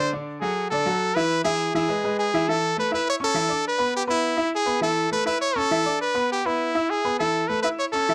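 Danceable and festive, this short Latin fragment in A major races along at 204 BPM, with a punchy, forceful trumpet singing a pop-style solo melody with vibrato up front, over a sparkling concert grand piano whose open, short-sustained chords reach down to a deep bass, all captured in a dry, close 1970s-style studio sound with light reverb, the harmony moving from D and E to A5 at 2.5 seconds and then into cycles of Aadd11, Bmadd11 and Asus2.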